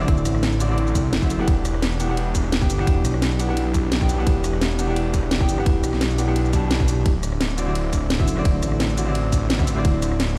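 Heard through a big sound system in a bare stone room, this melancholic, soulful liquid drum and bass excerpt in E minor at 172 BPM sets a tight, layered electronic kick and a tape-warm garage kit with a cracking snare, hi-hat, ride, rim click and shaker beneath a menacing, up-front detuned saw bass with tube saturation and a filter swell. Meanwhile, a brilliant baby grand piano with delay and long sustain accompanies the harmony as it moves from D9 to Em9 at 1.5 seconds and back to D9 at 7.1 seconds, and an airy, metallic vibraphone with fast motor vibrato and digital delay rings out arpeggios in the background.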